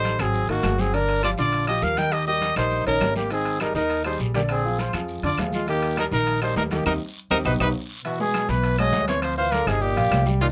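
An up-front trumpet carries the melody in this sunny, danceable excerpt of Afro-Cuban jazz, its warm tone touched with light vibrato as it moves between F4 and G5. Beneath it, a breathy tenor saxophone plays a second line with scooped notes, a soft attack and a whispered, intimate quality, while a vintage concert grand piano supplies smooth accompaniment with deep bass and audible action noise. A woody pizzicato upright bass sits up front, and the percussion stays in the background: bright congas, ringing metal-shell timbales, woody claves, a raspy guiro and grainy maracas. The tune runs at a brisk 203 BPM in 4/4 in Eb major, with harmony moving through chords such as Gm7, Abmaj9 and Bb9, and the band hits an accent at 6.9 seconds with a drum fill starting at 7.2 seconds before a new section at 8.0 seconds brings Eadd9 and Fm13 colours. A moderate booth ambience keeps the sound close.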